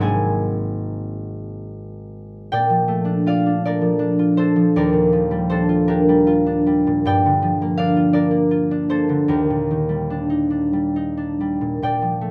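A concert harp carries this serene classical piece alone, its fingerpicked strings sounding warm and ringing, placed up front in the mix. The music moves in a slow, rubato 6/8 at roughly 45-55 BPM counted in dotted quarters, settled in Bb major and spanning from a deep Ab1 up to C6. A short opening passage rests on an Ab9 chord before a longer second section begins at 2.5 seconds, drifting through Bbmaj7, Ebmaj9, Gm7 and Ebmaj7 and returning to Bbmaj7 at 11.8 seconds. Close, detailed microphones and a nearly dry room let each plucked note speak clearly, giving the peaceful mood an intimate feel. This brief fragment is cut from a longer piece.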